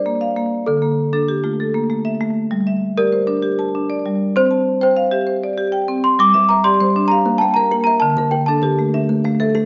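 The recording sits in a wet echo chamber with a small-room ambience, and its top end is gently rolled off, giving the sound a soft, enclosed glow. This trance-like, hypnotic southern African traditional piece moves in a steady, straight 12/8, and it is cut from a longer work. Up front, a celesta carries the melody with a delicate, bell-like sweetness from its hard felt hammers, while a marimba struck with medium hard mallets plays rosewood arpeggios that sound bright and percussive. A slapback echo trails both the celesta and the marimba. At 6.3 seconds a kalimba joins with mellow, woody fingertip plucks from a solid board, short and soft and sitting just behind the others, as the harmony moves into a new passage. The celesta drops out at 8.8 seconds, leaving marimba and kalimba to carry the cycling arpeggios to the end.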